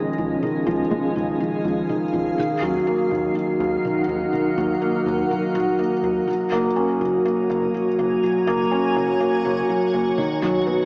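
A steady, straight 4/4 pulse carries this hopeful, tender piano and strings electronica excerpt, where a felt-muted upright piano sits up front playing a soft, intimate riff with audible action noise under a filter sweep. Alongside it a granular cloud pad holds blurred, detuned chords bathed in shimmer reverb, while a round analog bass with a wave-folded, deep tone enters at 0.2 seconds. The chords move from C#add9 through D#m7 and F# to B, all set in a lush hall reverb with a small speaker sound.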